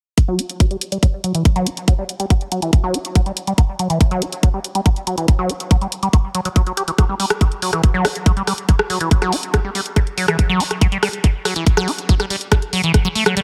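A straight, driving 4/4 pulse at 141 BPM anchors this alien psychedelic trance passage, cut from a longer piece. A tight, up-front electronic kick drum enters at 0.2 s alongside a tape-warm, layered garage kit of hi-hat and rim click. From 0.3 s a squelchy, resonant sawtooth liquid acid bass riff runs between E3 and G4 with phaser, sidechain pumping, dub echo and a filter sweep, all set in a light reverb.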